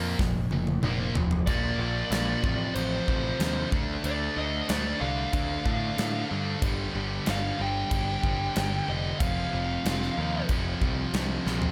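A straight 4/4 hard rock groove, heavy and menacing, is built on a crunchy overdriven guitar with spring reverb and a high-gain distorted guitar both playing the riff from the start, a growling picked bass with overdrive, and a gated 80s drum kit with a punchy kick and bright cymbals that opens with a fill at 0.2 seconds, while a dark, smooth overdriven lead guitar with digital delay carries the melody from 1.5 to 10.5 seconds, all set in a light small-room ambience in this passage cut from a longer piece.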